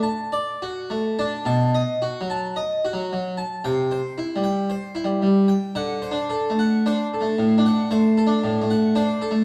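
A full, Flemish-style harpsichord with two sets of plucked strings sits up front as the sole voice in this brief, flowing fragment of a baroque-style suite movement, its radiant lines moving with a free, rubato feel across a range from A2 to A5. After an opening phrase on D, the harmony shifts to B7 as a new section begins at 1.5 seconds, then moves on to C and D7. The sound is bathed in a wet recital-hall reverb and colored by worn cassette tape, whose warbly pitch drift lends the instrument a faded, wavering quality.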